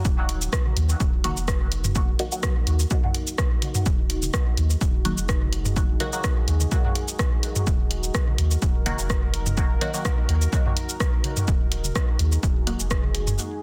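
A punchy analog kick drives this dub techno cut at 126 BPM in 4/4, with a light 16th-note swing, as a drum machine adds cabasa, hi-hat, rim click and a soft-clipped snare, all re-recorded in a large room, while tape-warm electronic toms sit in the background. Hypnotic and cavernous, the piece holds on Eb minor: a clean sine sub bass pumps beneath muted, detuned sawtooth chord stabs carrying phaser and dub echo, and a moody, mellow pad with chorus and built-in reverb pumps and sustains across the full 13.6 seconds. The dense, heavily limited master keeps the kick up front in a dark, tight mix.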